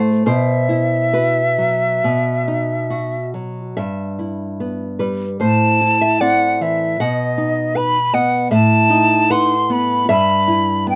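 This romantic duo for flute and classical guitar moves at a rubato 66-80 BPM in 4/4, with a yearning, solemn mood, in a passage cut from a longer work. The fingerpicked nylon-string guitar opens at 0.0 seconds with a small, warm acoustic accompaniment, and the bright silver concert flute joins at 0.3 seconds to carry the melody between D#5 and C6. The flute's tone is airy and metallic, with soft attacks, vibrato and lifted highs that make its expressive line shine. Both instruments sit up front in light reverb. Beneath them the harmony drifts from a suspended B chord through B, Em/G and Am, then leans on B and B7/A before settling back on Em/G, with the ensemble tuned to A4 = 439 Hz.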